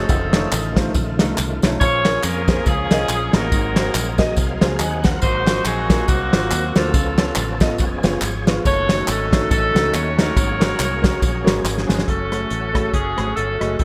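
Uplifting and hopeful, this short cut from an uptempo gospel piece rides a swung 4/4 feel with a bright, 1980s-style digital sheen and a moderate plate reverb. An edgy, up-front saxophone section carries the melody with vintage vibrato and a digital delay, while a smooth grand piano, treated with a lush chorus, fills in the accompaniment. Behind them, a gritty, overdriven tonewheel organ holds thick sustained chords through a slow rotary speaker and chorus vibrato, with audible key click and a short fill at 3.9 seconds. A punchy, foam-muted fingered electric bass anchors the low end, and a dark, rolled-off soul drum kit sits up front, joined by maracas and group handclaps until 12.0 seconds. The harmony moves through rich extended chords such as F7b13, Ab13 and Db7b13, and a drum fill at 11.6 seconds leads into a closing section that settles on Gbmadd9.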